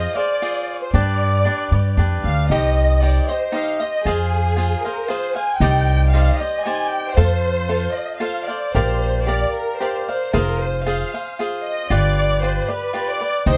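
Mexican folk in a mariachi vein, this passionate, dramatic fragment moves at 115 BPM in 3/4 over a minor-leaning progression that starts on Fm and turns through Cm, Bb6 and a closing G7. A lush, dark symphonic violin section carries the melody with expressive vibrato, its bowed ensemble tone sounding somehow both distant and up front, while a crisp, bright picked cavaquinho supplies the accompaniment. Beneath them, a woody pizzicato upright bass with steel strings sits louder in the mix, all framed by light reverb and a warm production.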